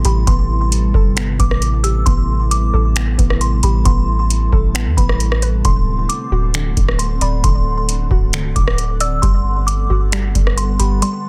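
A booming analog drum machine with a deep kick, metallic hats, finger snaps and rim clicks sits up front beside a soft, round 808-style bass in this ethereal, melancholic cloud-rap excerpt at 134 BPM in a half-time feel, while a glassy FM pad sustains Am9, D7 and Gmaj9 chords alongside a hollow square-wave pluck's arpeggios and a delicate, tinkling tine bell melody, all in a dense, heavily limited mix until the kick cuts out at 11.0 seconds.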